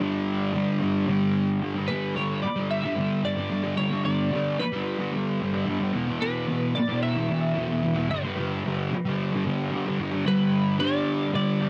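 Rock in G major at 111 BPM, blissful and dreamy, cut from a longer piece and captured as a cassette home recording in a small room with moderate reverb. A thick, double-tracked fuzz guitar sits up front with a low distorted riff, thickened by lush chorus, while a bright, clean twelve-string electric guitar carries a compressed, high melody through analog chorus and delay. Both guitars play from start to finish, moving from G5 to E5 at 5.9 seconds and settling on G at 8.1 seconds.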